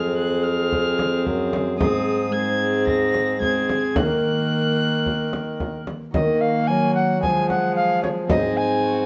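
This excerpt opens with a renaissance-style consort dance in Eb dorian at 111 BPM in a straight 4/4, rustic and courtly, where a single bowed violin with a nasal gut-string tone carries the melody high up to Bb6 while a bright, airy tenor recorder with crisp chiff and vibrato sings a second line above a ringing, fingerpicked concert harp and a reedy period-style viola. A solo bassoon with light vibrato anchors the bass, and a deep, large frame drum enters at 0.7 s and stops at 8.5 s. The chords move from Fm through Ab to Ebm, and after a second section begins at 6.1 s they return to Fm and Ab, all set in a moderate stone room.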